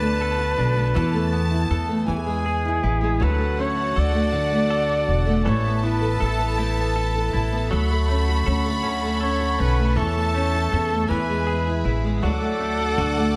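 Romantic and tender, this slow 6/8 pop excerpt at 53 BPM sets a clear, vibrato-laden flugelhorn melody with digital delay over a rich violin section's second line, a double-tracked, fingerpicked nylon-string guitar, bright, twangy arpeggios from a clean direct-recorded electric guitar in the background, and a woody pizzicato upright bass up front, while a soft, floating sul tasto string section adds sustained chords from 3.2 s through Dmaj7, Asus2 and A/E, all within a dark, warm production with light reverb.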